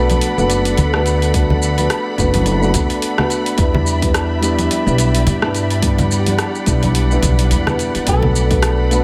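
Sunset chillout in B minor at 107 BPM with a 16th-note swing, wistful and relaxed, moving from Bm7 to Em7 and back in this short excerpt cut from a longer piece. A dark, mellow, boxy grand piano sits up front with digital delay over lush, bowed string chords with vibrato, while a woody, growly pizzicato upright bass anchors the low end. Tape-warm deep house hi-hat, rim click and shaker join bright, hard-handed congas in the background, a deep electronic kick enters at 1.3 seconds, and a fingerpicked flamenco guitar with audible finger squeak touches an A4 at 8.1 seconds, all in light reverb and studio ambience.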